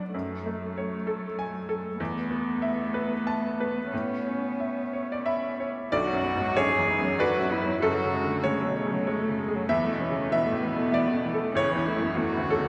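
Neoclassical piano and strings in B dorian at 96 BPM in a rubato 3/4, this reflective, melancholic excerpt sets a bright, worn, slightly detuned upright piano up front as accompaniment, joined by a veiled, con sordino viola with vibrato and a dark, muted cello carrying a second line with light vibrato, both strings bowed by single players in a recital hall with a 1.4 s reverb, moving through chords such as F#madd9, Esus4, Aadd9 and Bm across its 12.7 seconds.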